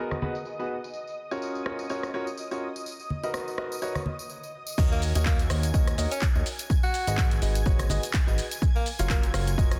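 A breathy tenor saxophone with scooped notes and vibrato takes a jazzy solo from 4.9 seconds in this soulful, bittersweet piano house excerpt, arriving just after the drop at 4.8 seconds brings in a punchy, up-front electronic kick and a plucky, wave-folded analog bass. Before that, a filter sweep opens the passage as a clear baby grand piano riff with delay and a silky, detuned analog string pad with chorus both pump against the sidechain, while a tape-toned analog drum machine of handclaps, hi-hat, rim click, shaker and crash cymbal plays alongside close, dry congas and tambourine. Light digital reverb surrounds a dense, heavily limited modern mix with a gentle swing.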